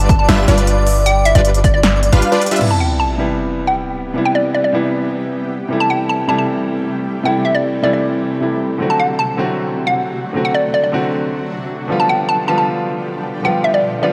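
This playful, lush future bass excerpt opens mid-drop at 155 BPM in a half-time feel, with punchy detuned supersaw stabs, a soft, dreamy lead playing arpeggios in the background and a deep, boomy 808-style bass, all three pumping against the sidechain, alongside an overdriven electronic kick and a big-room dance kit of crisp hats, crash and snare. A drum fill at 2.4 seconds leads into an impact at 2.6 seconds, where a sub drop lands and a clear, polished grand piano takes over the accompaniment, while a hollow, bouncy square-wave pluck carries the melody through to the end. A shimmering, ethereal pad joins at 3.9 seconds with sustained chords over a Cmaj7, Am7, D7 and G7 progression in C major, with dub echo on the pluck and piano and a moderate, lush hall reverb around them all.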